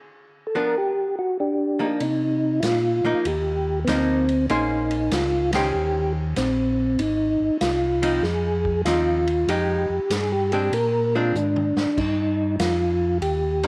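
Moderate echo-chamber reverb and small-room ambience surround this greasy, soulful soul jazz organ trio in C minor, swinging at 96 BPM. A soft, flute-like tonewheel organ with second-harmonic percussion, chorus vibrato and slow rotary speaker sits up front on the melody, joined at 0.6 seconds by a dark, compressed, hollow-body archtop guitar in accompaniment. At 2.0 seconds a round, mellow organ bass with key click arrives alongside a distant, roomy big-band drum kit with a boomy kick, and the drums add a fill at 11.3 seconds.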